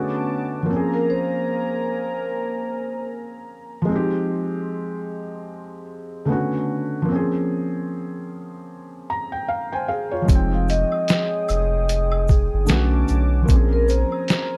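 Dark, hazy production with light reverb frames this melancholic lo-fi hip hop excerpt, built on a soft, muted upright piano with cassette-tape coloring that plays throughout and adds a fill at 8.7 seconds. A smooth, warbling analog pad with chorus and a mellow vibraphone played with soft mallets drift in and out. At 10.3 seconds a round, deep analog bass, a compressed, pitched-down sampler-style drum kit with a thumpy kick, and a faint tube shaker and woodblock in the background join for a swung groove.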